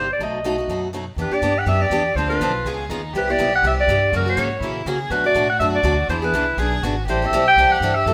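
A moderate stone-room reverb surrounds this bittersweet, swinging fragment of acoustic string swing, played live by a band sharing one room. Up front, a clear, punchy clarinet carries the melody with light vibrato and a vintage jazz bite. Beneath it are a bright, boxy parlour guitar's picked accompaniment and a woody, thumpy pizzicato upright bass on gut strings. At 1.2 s an intimate, airy violin enters with a soft-attack, sul tasto bowed second line as the harmony moves through chords such as Em7, Cmaj9 and F#7.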